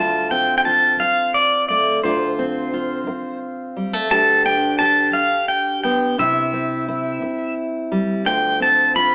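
A melancholic, intimate folk passage in D dorian opens with a pedal steel guitar and a fingerpicked steel-string acoustic guitar together, moving in a slow 6/8 at 58 BPM through Dm7, G/D and C before returning to Dm7 at 8.3 seconds. Up front, the clean, compressed pedal steel carries the melody with slide and volume swells, played with fingerpicks, while the acoustic guitar's fresh strings and audible finger squeak give its accompaniment a warm, close presence. The pair plays live in one room, and a moderate stone-room reverb and an AM-radio tone frame this short excerpt cut from a longer piece.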